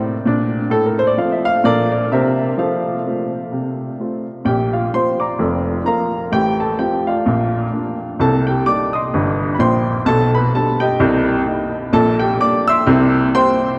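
A vast, echoing cathedral reverb with a long 5.4-second tail surrounds this short cut from a longer stride piano performance, giving the playing a wet, ringing halo. At its heart is a solo upright piano with a woody, polished tone, close and up front in the mix and ranging from deep bass notes to bright upper treble. The tune moves at 128 BPM in 4/4 with a light swing on the eighth notes, and its mood is playful and exuberant. It opens in F major, passing through colourful chords like Bbmaj7 and C9, then shifts to Bb major at 4.5 seconds for a second passage that visits Cm7 and G/B before landing on a C7. The instrument is tuned slightly below standard pitch, at A4 = 438 Hz, and the piece breaks off at 13.8 seconds.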